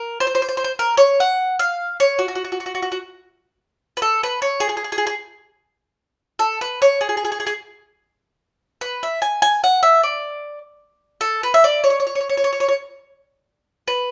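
Italian folk music from a longer piece, this short passage of about 14 seconds carries a lively, romantic mood in 6/8 at 100 beats per minute, counted in dotted quarters. A solo bowl-back mandolin plays the whole way through, its picked double strings giving a bright acoustic tone that sits up front. The line moves between F#4 and G#5, and the feel is rubato, so the pulse breathes freely rather than holding strict time. The music passes through three short sections, with the longest stretching from 3.4 to 13.0 seconds before a brief closing phrase. A light reverb and the sense of a live room lend the instrument a natural, intimate air.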